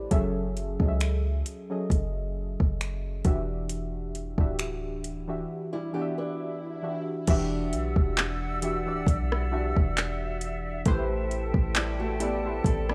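Contemporary R&B at a slow 67 BPM in E dorian, longing and moody, with mellow, round analog keys carrying chorus over a deep, boomy 808-style bass and an up-front, overdriven electronic kit of soft kick, metallic hats, finger snaps, handclaps and rim clicks. A fingerpicked nylon-string guitar with analog delay, heard only briefly at the very start, returns with arpeggios at 5.7 seconds, the drums drop out while an electronic swell rises in the background, and at 7.3 seconds an airy flute section enters with sustained, vibrato-tinged chords under sidechain pumping. The chords move from F#m9 to Em9 and later Am9, and the sound is dry and gritty with small room ambience, cut from a longer piece.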